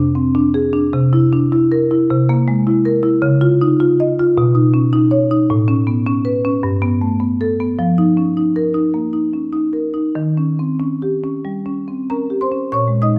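Flowing in a rubato 4/4, this reflective, hypnotic contemporary classical piece features a solo marimba played with medium mallets, its woody, dark and smooth tone sitting up front and spanning from G2 to Eb6. The harmony drifts from a rootless Fm6 and C7 through a chain of add9 chords on Db, B, A and G before settling on F7sus4 at 7.8 seconds and Eb7 at 10.2 seconds. A moderate recital hall reverb surrounds the instrument in this short excerpt cut from a longer work.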